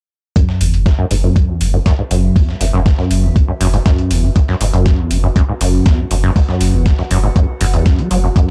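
Trippy, gritty acid house cut from a longer piece, in which a thumpy, up-front electronic kick and metallic analog hi-hats drive a rubbery, resonant sawtooth acid bass riff with lush chorus, tape echo and sidechain pumping, alongside a round sine sub bass with tube saturation, an overdriven sampler-style soul kit of hi-hat and snare tucked low, and a detuned, nostalgic lo-fi pad that fades in from 1.7 seconds, warbling through chorus and phaser in the background of a dark, dry, warm mix.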